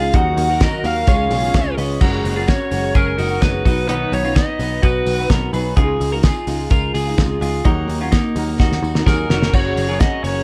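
A straight 4/4 pulse at 128 BPM drives this breezy, bright stretch of jangly indie pop in F# major, cut from a longer piece. Up front, a cloth-damped, thuddy drum kit sets the beat with a fat snare, tight kick and dark cymbals in a small room, and a drum fill arrives at 8.6 seconds. A round, foam-muted picked bass holds the low end, while a fingerpicked steel-string acoustic guitar adds full-bodied accompaniment with audible finger squeak, and a clean, twangy twelve-string electric guitar rings out in arpeggios. A biting, overdriven lead guitar carries the melody from the start, falls away at 5.3 seconds, then returns briefly near the close. A smooth, warbling analog pad with chorus lingers faintly under the opening two seconds, and a jingly, very quiet tambourine sits deep in the mix, all under light reverb as the chords move from D#m and C# through F#add9, B and C#add9.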